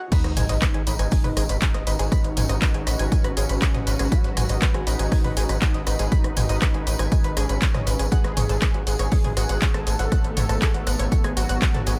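A straight 4/4 pulse at 120 BPM drives this melancholic, dark melodic techno excerpt in G# phrygian, built on an up-front, tape-warm electronic kick, a punchy analog drum machine with crash, handclaps, hi-hat, rim click and toms re-recorded in a large room, a very quiet gritty breakbeat sampler-style kit with a high-tuned snare, and a distant, jingly tambourine, while a very quiet electronic sub drop marks the impact from 0.1 to 2.1 seconds. Underneath, an aggressive, nasal driven synth bass with oscillator sync and distortion pumps against the kick, as a round analog pluck spins chorused arpeggios through dub echo and a fat, detuned analog lead sings a mellow, vibrato-tinged melody through tape echo. A cloudy, evolving granular pad drifts in the background, and the harmony moves from G#m to F#madd9/G# at 8.1 seconds, all in a dry mix.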